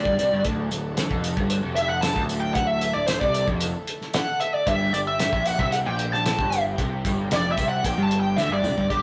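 Psychedelic rock with a hazy, trippy mood at 114 BPM in a straight 4/4, this short excerpt cut from a longer piece is carried by a dark, up-front lead guitar soloing with wah and distortion from G4 to A5 over chords moving from D to G5. Beneath it, a crunchy, double-tracked rhythm guitar plays a riff through a rotary speaker, a round, punchy fuzz bass holds the low end, and a buzzy vintage combo organ sustains chords with light vibrato in the background. A cloth-damped, thuddy drum kit with a fat snare sits up front and closes with a fill at 8.4 seconds, while a jingly tambourine sits behind, all captured in a rough rehearsal-room recording with moderate stone-room reverb.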